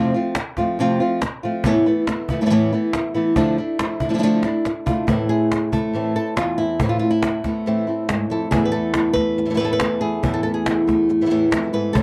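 An up-front, fingerpicked acoustic flamenco guitar carries the melody in this intense, passionate flamenco excerpt at 140 BPM in 4/4, set in E phrygian dominant over chords of F, Esus4, Dmadd9 and Am. A woody cajon with faint snares and a live-room feel joins at 0.3 seconds and plays a fill at 4.4 seconds. A second warm flamenco guitar adds fingerpicked stabs, with audible finger squeak, from 1.6 seconds, all captured in a dry, close 1970s-style studio sound with light reverb.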